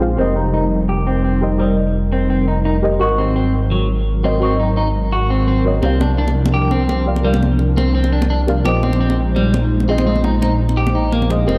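Dreamy and lush, this liquid drum and bass excerpt moves with a gentle swing over sus-flavoured ninth chords. A swelling, detuned saw bass sits up front with a menacing, saturated edge, its tube-driven tone evolving through a filter swell. Deep, mellow chord stabs with a sub octave strike with a fast attack and then decay, coloured by chorus, phaser and digital delay, while an airy, breathy pad with a noise layer and moving notch holds sustained chords in the background. From 0.2 seconds an electric guitar at the edge of break-up plays picked arpeggios up front, its slightly broken-up tone softened by a low-pass filter, spring reverb and tape echo, and a filter sweep runs across it. Bright, compressed congas join at 5.8 seconds, and the whole production has a dark character set in a moderate recital-hall ambience.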